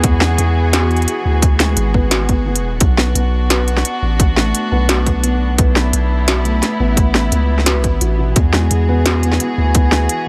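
A half-time drum and bass groove at 173 BPM in 4/4 drives this tense, dark fragment, its sixteenths carrying a light swing, with a brief break between 2.5 and 2.8 seconds. Up front, a hard-clipped electronic kick with overdrive anchors the beat, joined by an industrial kit whose clanging snare and crisp hats sound tape-warm and re-recorded in a small room. Beneath them, a deep, sine-like 808-style bass with a fast attack and long decay sits prominently, thickened by tube saturation. Further back, a felt-muted upright piano plays soft, intimate arpeggios with audible action noise and a delay, while a studio string section holds bowed, reedy chords with light vibrato and a gut-string, period-style tone, pumping against a sidechain. In B dorian, the harmony moves from E to B minor at 2.8 seconds and returns to E at 8.4 seconds, all wrapped in a digital ambience.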